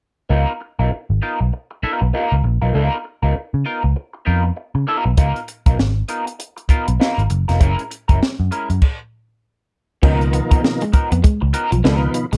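Funk at 99 BPM in Db mixolydian, this energetic, strutting fragment cut from a longer piece rides a swung sixteenth-note feel over Db13 and Gb9 chords. A lo-fi electric guitar through a small old amp plays the accompaniment with wah, sitting back in the mix beside a round, foam-muted picked bass that stays dark and up front. The compact cocktail drum kit enters at 5.2 seconds, dry and close, with a high-tuned snare, punchy kick, hi-hat and a dusky crash cymbal. A stop arrives at 8.8 seconds, and at 10.0 seconds a twangy, slightly broken-up second guitar adds a quiet riff while a smooth, clean tonewheel organ punches in with stabs coloured by chorus vibrato and slapback echo. The warm, dark production carries little reverb, keeping the groove tight and intimate.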